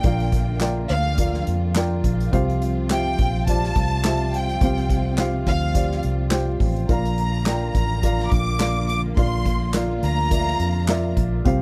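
A round, foam-muted electric bass sits up front in this hopeful, uplifting piano-driven pop excerpt with a light swing, joined by a punchy acoustic drum kit played with bundle sticks, hand claps and hi-hat, a dark, woody, slightly detuned upright piano, a lush background string section holding soft-attack chords over Bb and Fsus2, and a smooth, vibrato-rich violin section carrying the high melody until 11.1 seconds, all captured in a dry, close 1970s-style studio sound.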